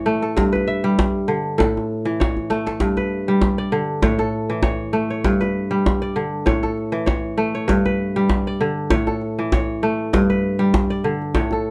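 Ringing, crisp fingerpicked kora arpeggios open this flowing, joyful West African traditional excerpt, joined almost at once by an up-front, medium-tuned djembe in a small room that plays a short fill from 2.4 to 2.8 seconds as the music moves into its second section, with the harmony rocking between G and A in a moderate studio ambience.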